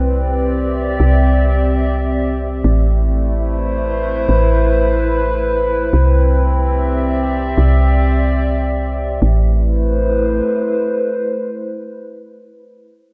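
A warbling, lo-fi tape-like pad holds sustained chords with chorus and its own reverb while a woody, round FM bass sits up front beneath it, the two drifting through Cmaj9 and Am7 in an eerie, melancholic IDM fragment bathed in light digital ambience, until the bass stops at 10.4 seconds and the nostalgic pad carries on alone over a closing Am to 12.6 seconds.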